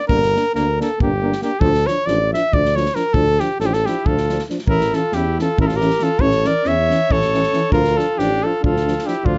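A clear, soft-attacked flugelhorn opens this restless, bittersweet Balkan brass band fragment in D harmonic minor, carrying the melody up front over a brisk 7/8 at 276 BPM in eighths; at 0.1 s it is joined by a dark euphonium with light vibrato and a distant, roomy trombone in the background, a mellow tuba bass, and an acoustic drum kit of punchy kick and medium-tuned snare played with bundle sticks, before a smooth-topped alto saxophone with vibrato adds a second line from 3.9 s, the whole set in light reverb as the chords move from Gm through Dm and A back to Dm.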